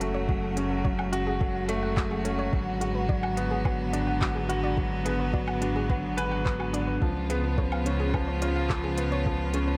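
A straight 4/4 pulse at 107 BPM drives this intimate, cinematic piano-and-strings electronica excerpt. An organic electronic drum kit of handclaps, crisp hi-hat and woodblock carries an overdriven edge in a small room, joined at 0.3 s by a soft, overdriven electronic kick. Up front, a worn baby grand piano plays a riff with long sustain and digital delay, while a deep, rumbling detuned saw bass beats and pumps beneath it. A clear, focused string quartet holds bowed chamber chords with vibrato from a distant position, and a gentle, round pluck sits in the background, spinning arpeggios through chorus, digital delay and sidechain pumping. Light reverb surrounds the mix as the harmony moves from F#madd9 to G#m7b5 and then to C#7 at 7.0 s.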